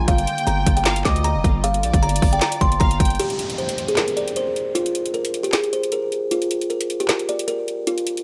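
A woody, ringing kalimba with delay carries the melody of this dark, brooding half-time trap piece from the start, joined by a lush bowed violin section with delay, a hollow, flute-like pad with ensemble chorus in the background, and a punchy, heavy 808-style bass over a Gm7 chord. A trap kit sits up front alongside them, with a hard-clipped kick, woody snare, metallic hi-hats and handclaps. At 3.2 seconds the violins, pad and 808 drop out for a break that leaves the kalimba and drums under light reverb, while an electronic downlifter runs until 6.3 seconds.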